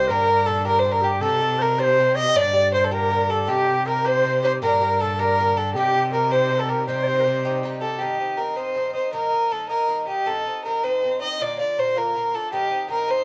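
Recorded in a small room with a rough home-demo feel, this cut from a longer Celtic folk piece moves in a driving, dark and lively 6/8 at 106 BPM in C dorian. A dark, woody bowed fiddle with light vibrato carries the melody up front throughout, while an airy, bright wooden flute plays a tongued, expressive second line until 7.6 seconds. Beneath them, a picked Irish bouzouki rings with metallic double strings, and a smooth, warm bowed cello holds the bass until 8.0 seconds, as the harmony circles Gm and Cm before shifting through Eb and Bb.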